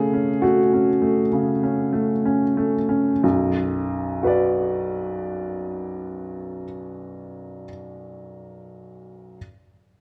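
In a loose, rubato 4/4 hovering around 60-69 BPM, this melancholic, wistful fragment of neoclassical minimalist piano in B dorian slows through its opening 3.2 seconds over an F#m/C# chord before settling onto Bm. A solo upright piano, woody and intimate with audible action noise and long sustain, sits up front across a range from B1 to D5 for its full 9.4 seconds. A moderate recital hall reverb surrounds it, and the whole sound is worn like old cassette tape, its pitch drifting in a warbly haze.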